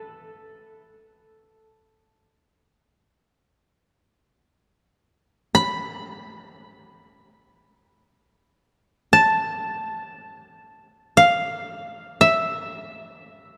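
Solitary and austere, this fragment of Japanese traditional chamber music unfolds in free time as a lone koto, plucked with fingerpicks and sitting up front with a dry, woody tone between A4 and B5, rings for 13.6 seconds through a dark production and a moderate church reverb.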